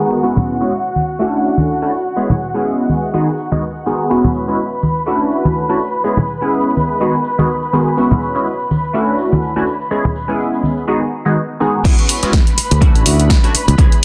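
Filtered disco house at 124 BPM in E major, funky and joyful, with a detuned, wave-folded sawtooth polysynth comping up front through chorus and phaser while muted, veiled strings hold sustained chords beneath, both pumping against the sidechain under a low-pass filter sweep as the chords cycle through E69, Dmaj9, C#m7 and G#m7/D#. Dry, close tambourine and congas carry the groove until 10.9 seconds, and at 11.8 seconds the drop lands with an overdriven, punchy kick, drum-machine snare, hi-hat and crash, plus a bright, growly fingered electric bass. An echo chamber reverb and a dense, heavily limited master give this short cut from a longer track its polish.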